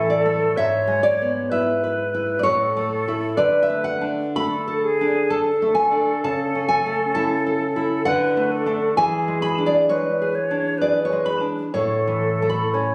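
A nylon-string guitar and a hollow concert flute begin together, opening a tender romantic duo in triple metre with a flexible, rubato feel. The fingerpicked guitar sits up front, dark and full-bodied, and its accompaniment covers a broad span from G#2 to B5, with a finger squeak adding a close, human touch. Above it, the flute carries the melody in a narrow middle register, its pure, tongued tone shaded with vibrato and sitting a little further back than the guitar. The harmony moves gently through A, E/G#, D and A/C#, coming back to A near 11.7 seconds. A moderate recital-hall reverb surrounds both instruments, though the recording has the plain, slightly distant quality of a phone in the room. The music is cut from a longer piece and ends at 12.9 seconds.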